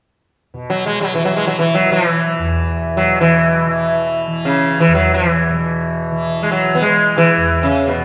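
A plucked sitar with a buzzing tone and ringing sympathetic strings sits up front, entering at 0.7 s to carry the melody in the low-middle register over a softly plucked, shimmering tanpura drone that begins at 0.5 s. This Hindustani classical passage in raga bhupali on E unfolds in free time with a meditative, radiant mood, its tuning set to A4 = 441 Hz. A lush concert-hall reverb with a 2.0-second decay surrounds both instruments in this short section cut from a longer piece.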